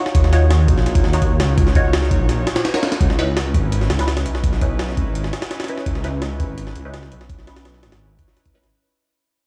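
Dry and dusty, with vinyl crackle and the stone-room ring of a big sound system in a bare space, this short cut from a longer drum and bass and jungle piece moves at 168 BPM in a dark, nostalgic mood, sitting on a drop from the start and fading out from 3.0 seconds as Ebm9 gives way to Dbm9. Up front, a gritty, pitched-up sampler-style jungle kit pairs a thumpy kick and high-tuned snare with hi-hat in a small room, while a thick, menacing detuned saw bass beats through tube saturation. Behind them, a warbling lo-fi tape-like pad holds slow-blooming chords with chorus and reverb, and a muted, deep, filtered dub chord stab plucks and evolves through phaser, ensemble chorus and dub echo.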